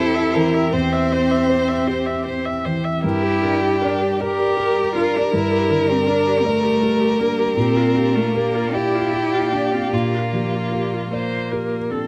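Neoclassical piano and strings in a slow, rubato 6/8 at 52 BPM, melancholic and fragile, this short excerpt moves through C/E, Gm and Bb6 chords. A single bowed violin carries the vibrato-rich, focused melody up front until 11.7 seconds, with a smooth, even cello on a second line and a viola filling in the accompaniment. A thick-felted upright piano, dark and intimate with audible action noise, sits close beside them, while a warbling, detuned lo-fi pad with chorus and its own reverb holds nostalgic chords in the background, all within a light reverb.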